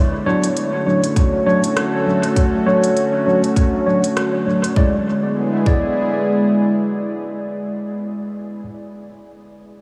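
A clean tine electric piano, heard through a combo amp, plays lush chorused, dub-echoed stabs under a low-pass filter that sweeps through the first 4.8 seconds, over a warm, soft-attack sawtooth analog pad holding sustained Dmaj7 chords that move to E7 at 4.8 seconds, a very quiet, bubbling, detuned texture of resonant random filter steps, smooth electronic hi-hat and rim clicks, and a tight, up-front electronic kick entering at 1.2 seconds, together forming a spacious, peaceful ambient dub excerpt at 100 BPM in E mixolydian with a swung sixteenth feel, soaked in dreamy, huge reverb.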